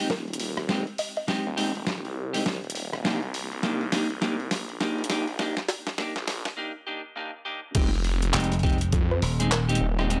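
Dark, clean electric guitar stabs with spring reverb, pumping and analog delay open this playful, gritty glitch hop fragment over a thick, swirling phased saw bass, as a woody, nasal wave-folded pluck with chorus flickers briefly and a compressed, tape-toned boom bap kit of snare, hi-hat, rim clicks, handclaps and crash drives a swung build-up with a drum fill and filter sweep. After a short break at 6.6 seconds, the drop lands at 7.8 seconds with a pitched-down, thumpy electronic kick, and a bright, growly slap bass cuts in soon after while the pluck returns near the close. The dry, saturated hardware sound keeps a raw edge under light reverb.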